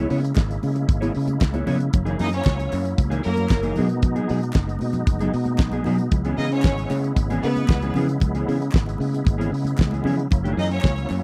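A damped 70s drum kit sits up front with a fat snare and tight kick, driving this sultry disco excerpt at 115 BPM in C# dorian, joined by a round, punchy fingered electric bass and a mellow, clean electric guitar with ensemble chorus over chords moving from C#m7 to F#13 and B6. A reedy tonewheel organ with key click and fast rotary speaker holds sustained chords, while very quiet, high-tuned congas play along and a crisp, distant group handclap sits in the background. From 2.2 seconds a lush, bowed string section adds a smooth second line, all captured as a dry, close 1970s-style studio recording with small room ambience.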